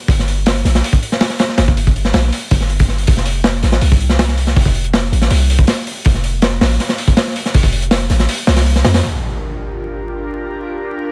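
A crunchy, saturated breakbeat kit with a punchy kick and gritty, rolled-off top sits up front beside a deep, boomy 808-style bass in this raw, nostalgic drum and bass and jungle excerpt at 161 BPM, dry and dusted with vinyl crackle, until at 9.0 seconds both give way to an airy, breathy pad with chorus on a Gm7 chord, marked by an electronic impact.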